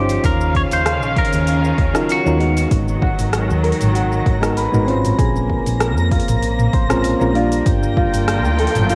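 A clean, twangy electric guitar melody with phaser and tape echo opens this smooth sunset chillout excerpt at 97 BPM, alongside soft, warbling electric-piano-like synth keys, rich bowed strings and a dark, round hollow-body bass moving through D#m9, G#m9, A#m9 and Gm9, while a smooth R&B kit with metallic hats, rim click, shaker and toms joins a punchy, overdriven electronic kick in a lightly swung groove; the guitar drops out at 2.7 s, thumb-plucked harp arpeggios and a twinkling granular shimmer ring in from 3.0 s, and a background riser arrives at 8.4 s, captured as a cassette home recording with light digital reverb.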